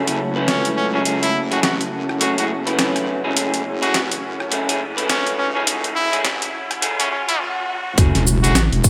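Glitch hop at 104 BPM in F# minor, playful and funky, with a swung sixteenth-note feel over a held F#m7 chord in this short cut from a longer piece. A smooth, detuned analog pad sustains chords with chorus and sidechain pumping, while a warbly, nostalgic tape-like pad sits dark and distant in the background with its own reverb until 7.4 seconds. A twangy, slightly broken-up electric guitar through a small old amp plays bright stabs with dub echo, and a heavy, saturated wobble bass with chorus rumbles mellow beneath. A brilliant trumpet carries the solo melody with vibrato and scooped notes, forceful and punchy, trailing dub echo, over a gritty, pitched-down boom bap sampler kit of hi-hat, rim click and snare with small room ambience. The passage builds under a filter sweep and a riser from 2.2 seconds, pauses briefly for a break, then lands on an impact at 8.0 seconds, where a tight, layered electronic kick and a grainy cabasa enter, all set in a lush hall reverb.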